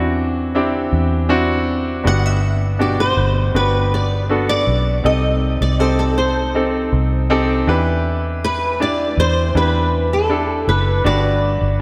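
Soaked in a lush hall reverb that gives the mix a dreamy glow, this emotional, hopeful pop ballad excerpt sets a fingerpicked flamenco guitar with fresh strings and an ensemble chorus on the melody over a clear, polished concert grand piano with deep bass and a round, punchy, foam-muted vintage electric bass, all three parts up front as the chords move from Cadd9/E through Gmaj7, Cm6 and Em7 back to Gmaj7.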